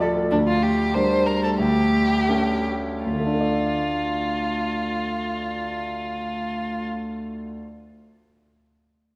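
A quick classical-period movement for piano trio in D minor, this short excerpt cut from a longer piece feels restless and urgent, moving in a straight 2/4 at around 77-95 BPM with tuning set to A4 = 444 Hz. A concert grand piano carries the accompaniment from the start, its clear, polished tone reaching down into deep bass and ringing with long sustain, present and up front. A solo bowed violin takes the melody from 0.3 seconds, smooth and even with vibrato, sitting close to the listener in its middle register. The tempo slows over the opening 3.1 seconds as the harmony passes from Gm/D to A7/D before settling on Dm, where a second section begins. The recording is heard from further back in a concert hall, bathed in a lush reverb that lingers for 2.2 seconds.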